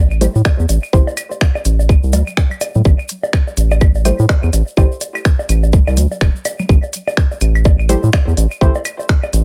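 Minimal techno excerpt with a cool, sparse mood, built on a tight, up-front electronic kick and a round, deep analog bass pumping under sidechain, with clicky hats and finger snaps from a minimal click kit, tape-warm claves, bongos, congas and woodblock in digital delay, a grainy tube shaker in the background, and a muted, chorused dub chord stab appearing briefly at 0.2, 4.1 and 7.9 seconds, all in a close, dry sound.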